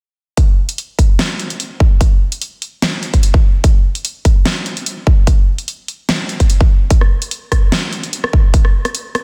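A punchy, layered electronic kick drives this chaotic, aggressive dubstep excerpt in a half-time feel, entering at 0.4 seconds together with a big-room dance kit whose huge snare, hi-hat and rim click sit up front in studio reverb within a dense, heavily limited modern master.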